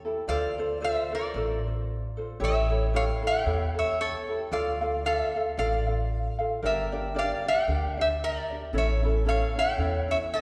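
A lightly swung 4/4 at 114 BPM in D minor carries this sunny, languid Hawaiian excerpt, cut from a longer piece, with the chords moving from Dm7 through A7, Dm and Gm to A. A metallic, nasal lap resonator guitar played with fingerpicks and slide carries the melody up front, over a thumb-plucked, light ukulele accompaniment, while a woody, growly pizzicato upright bass on steel strings enters at 0.3 seconds. The parts are set in a reverberant concert hall and heard from further back in the room.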